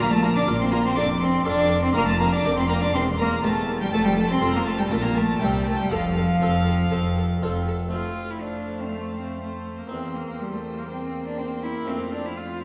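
A rich, nasal solo cello leads from the front in this stormy, driving baroque-style concerto movement in F major at 121 BPM, over a gut-strung period band of reedy violin sections on melody and a second line, a background viola section, a distant cello section and a round, plucked harpsichord, while the close double bass section drops out at 7.9 seconds, all heard from further back in a wet concert hall.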